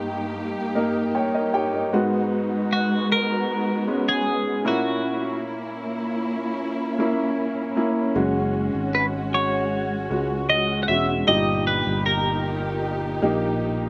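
Melancholic and longing, this pop excerpt moves at a slow 77 BPM in 4/4 with a straight feel, set in G# minor. A clear, woody upright piano carries the accompaniment from the start, adding a short fill at 0.8 seconds, while a lush studio string section holds sustained chords beneath it with expressive vibrato and portamento. At 2.7 seconds a twelve-string electric guitar takes the melody, its picked, twangy tone clean and compressed and colored by a phaser, sitting up front in the mix. A sustaining fretless electric bass enters at 8.2 seconds with a growly, direct low end. The chords pass through G#m7, A#dim and F#sus2 before returning to D#/G, and light reverb colors the outdoor recording, which carries little room sound.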